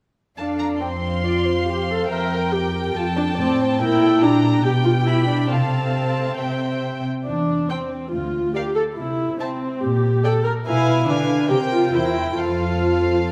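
A quick classical-period movement for string orchestra in F major, this cheerful, spirited passage moves at 140 BPM in 4/4, with a flexible, rubato feel that lets the beats breathe unevenly. Two violin sections carry the upper parts, one singing the melody high in its range and the other weaving a second line beneath it, both played sul tasto with light vibrato, soft attacks and a gentle, intimate quality, the second part rounded off with a smooth top. The violas supply the accompaniment with a darker, up-front tone, while the cellos anchor the bass in a similarly dusky, close voice. All four sections play together from 0.4 s to 13.3 s, and the harmony travels from F through diminished and inverted chords, touching Bdim7 and C7 before settling home on F at 12.4 s. A lush scoring-stage reverb with a 1.6-second decay surrounds the ensemble, giving the chamber-sized strings a spacious bloom, and the passage is cut from a longer piece.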